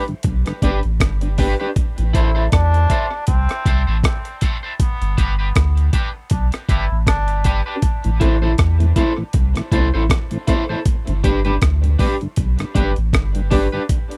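A dry, close 1970s-style studio sound frames this hypnotic, heavy dub reggae passage, where a gritty, compressed sampler-style breakbeat kit with a thumpy kick and a deep, round sine sub bass sit up front beneath a slightly broken-up, twangy electric guitar dressed in lush chorus and dub echo, a dark tonewheel organ with key click turning slowly through its rotary speaker in the background, and a bright, distant trombone carrying a second line with vibrato from 2.1 to 7.6 seconds.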